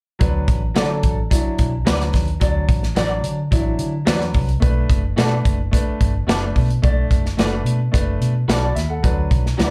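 Uptempo 1960s-style soul at 109 BPM in D major, this joyful, danceable clip is cut from a longer piece and sounds like a live gig heard through the venue's PA, with a touch of club reverb. From 0.2 seconds an acoustic drum kit sits up front with hi-hat, a punchy kick and a medium-tuned snare, alongside a dark, round, foam-muted electric bass and a clear, slightly boxy baby grand piano carrying slapback echo. At 0.8 seconds an electric guitar through a small old amp adds stabs, its tone slightly broken-up and lo-fi, treated with ensemble chorus and slapback echo. The harmony moves from D6 to Bm7 at 4.6 seconds and back to D6 at 9.0 seconds. The piano plays a fill from 8.2 to 9.0 seconds to close the section.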